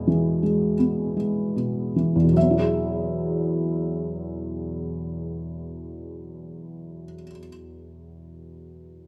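A felt-muted upright piano plays alone from 0.0 to 9.1 seconds, its soft, mellow tone sitting up front with the quiet clatter of its action audible beneath the notes. This short excerpt of a lyrical classical solo piece has a tender, peaceful mood. The playing moves in a free rubato over a slow four-beat metre, easing and slowing down through the opening phrase on an E chord until 2.4 seconds. The harmony then opens into an Eadd9 chord for the longer second passage, with the piano ranging from E2 up to E5. A moderate recital hall reverb surrounds the intimate sound with a gentle sense of space.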